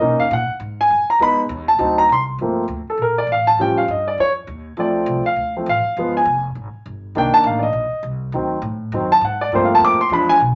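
A warm, up-front grand piano takes a solo from the very start over a woody, growly pizzicato upright bass sitting lower in the mix, in this brassy, dramatic big band swing excerpt at 202 BPM in G minor, swung in 4/4 through rich chords like Gm11 and D7b9, all set in a wet small room with a dark, rolled-off top end.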